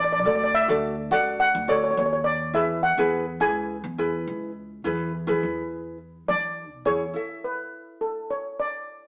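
Sunny and carefree, this short calypso excerpt moves at a straight 104 BPM in 4/4, tuned slightly sharp to A4 = 443 Hz. A shimmering steel pan carries the melody up front throughout, its metallic tone softened by rubber sticks into a mellow, vintage, band-limited sound. Alongside it, a light fingerpicked ukulele enters at 0.2 seconds and stays close and present, while a woody, thumpy pizzicato upright bass on gut strings sits lower in the mix until it stops at 7.1 seconds. The harmony moves from Dadd9 to E and settles on A5 as the closing passage begins at 7.2 seconds, leaving pan and ukulele to finish together. The trio sounds like a band playing live in one room, wrapped in a stone room reverb and heard through a small speaker.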